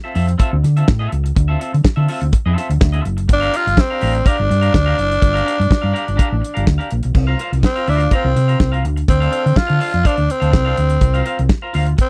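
Sultry and glamorous, this disco clip opens on a bright, twangy clean electric guitar over a round, hollow-body fingered bass and a damped 70s drum kit with dark cymbals and a tight kick, before a growling, breathy tenor saxophone enters at 3.3 seconds and takes a raspy solo from 7.2 seconds, all captured in a dry, close 1970s-style studio sound.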